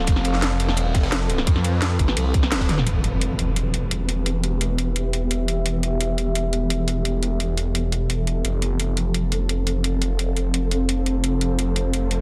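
A dense, heavily limited modern mix with light reverb opens this cut from a dark, technical drum and bass track at 172 BPM in E phrygian, mechanical and futuristic in mood, as a swirling, thick detuned saw bass with phaser and tube saturation sits up front beneath a tense, swarming granular drone and a deep, moody ambient pad, both pumping against the sidechain. A tight electronic kick, a gritty, rolled-off breakbeat kit in the background and an up-front drum and bass kit with cracking snare and metallic hats drive the drop, which ends on a band accent at 2.5 seconds and a drum fill. From 2.9 seconds an electronic impact hits and a filter sweep moves across the drone while the chords shift from F to E minor and back to F.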